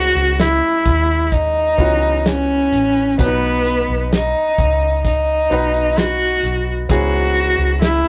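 A rich, bowed cello carries the melody up front, its smooth, even line sung with vibrato by a single player over a heartbroken, melancholic pop ballad cut from a longer piece. A polished baby grand piano plays clear accompaniment beneath it, while a dark, round, foam-muted electric bass holds the low end and a damped 70s drum kit joins at 0.4 s with a fat snare, tight kick and hi-hat under a rolled-off top. The harmony moves from C#m7 to B and back, and the rough rehearsal-room sound carries tube saturation and moderate reverb.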